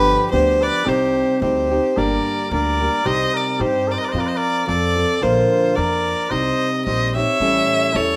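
Mariachi-flavored Mexican folk in G minor at 110 BPM with a lightly swung 2/4 feel, this passionate, dramatic excerpt puts a rich, smooth bowed violin up front carrying the melody with vibrato, while a mellow, distant trumpet plays a classical-style second line, a fingerpicked flamenco guitar supplies the accompaniment, and a woody, thumpy pizzicato upright bass on gut strings anchors the low end, all in a moderate studio ambience as a short opening gives way at 2.0 s to a longer passage that closes on an A7 chord.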